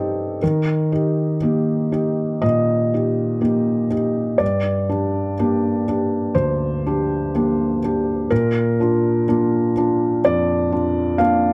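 Neoclassical minimalist piano at a slow 62 BPM in 4/4, played with a rubato feel that gives this short excerpt an intimate, wistful mood. A felt-muted upright piano plays alone throughout, its soft, mellow tone sitting up front with the audible action noise of the instrument captured by close, detailed microphones under light reverb. The harmony moves from Eb to Gm at 4.4 seconds and settles on Bb at 8.3 seconds.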